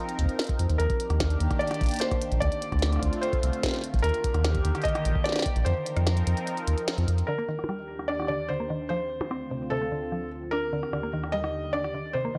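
IDM with a wistful, intricate mood, cut from a longer piece and captured as a dry, gritty hardware recording with light reverb. A swirling, detuned analog pad with phaser and chorus holds sustained chords throughout, while a felt-muted upright piano carries the melody up front, its mellow, intimate tone colored by audible action noise and analog delay. Beneath them, a round, dark analog bass sits prominently alongside a deep, tape-warmed electronic kick re-recorded in a large room, and a glitchy drum kit adds clicky hi-hats, a tiny snare, rim clicks and percussion blips, with the hats, snare and blips low-pass filtered. The kick drops out at 5.7 seconds, and a band accent lands just before the bass stops. At 7.3 seconds a woody, FM-based mallet-like pluck enters with chorused arpeggios and tape echo, as a filter sweep runs over the drums to the end.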